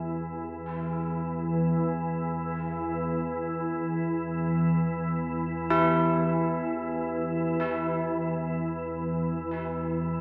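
An ominous, desolate dark ambient drone in free time opens on a calm, organ-like drone sitting up front, its sine-based, wave-folded tone swelling in slowly through ensemble chorus and its own reverb, while close-miked carillon bells ring out bright, bronze-toned arpeggios with a worn iron clapper and tape echo. The bells fade out across the whole 10.2 seconds, their minor-third overtone hanging over the sustained low drone. Cut from a longer piece and tuned to A4 = 442 Hz, the echo-heavy mix is bathed in a wet plate reverb yet carries a small-speaker sound.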